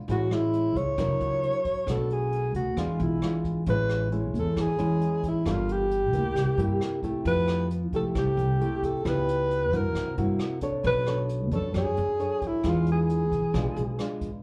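Heard through a club's PA with light reverb, this short live bossa nova snippet has a relaxed, sophisticated air and a straight, easy feel. A dark alto saxophone carries the melody up front in a smooth jazz style, its vibrato and slapback echo giving the solo line a gentle sheen. Close beside it, a thumb-plucked nylon-string guitar in a classical manner supplies the chords, with audible finger squeaks and its own slapback echo. Underneath, a pizzicato upright bass on steel strings sounds woody and growly, while a distant, roomy brush kit adds hi-hat, rim clicks and a boomy kick with a rolled-off top. The harmony moves through rich jazz chords such as Amaj7, Gm9, Fmaj9 and C7#11 before settling on E7b9 near 12.6 seconds, as the passage ends around 14.4 seconds.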